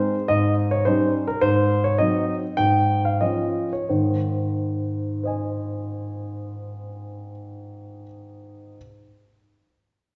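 Elegant and cheerful, this short passage cut from a longer classical-period sonatina in Ab major has a solo baby grand piano, warm and polished with long sustain, moving in 2/4 with rubato between 86 and 107 BPM, slowing from 0.9 to 3.9 seconds as its harmony settles onto Ab, all tuned to A4 = 436 Hz and heard from further back in a wet recital hall whose sound is softened at the top.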